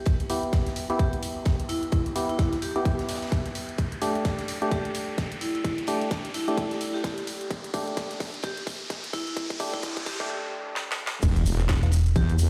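Heard through a big sound system in a bare stone room, this bouncy, aggressive bass house excerpt builds with a riser, noise sweep and filter sweep as a hollow, chorused organ stab and a ringing hard-mallet vibraphone with tape echo ride over a tight electronic kick, a garage kit's cracking snare and warm hats, and a dry cocktail kit in the background, until the drop lands at 11.2 seconds on an impact with a heavy, detuned wobble bass and a grainy tube shaker, joined at 11.8 seconds by a brief, dark metallic FM bass.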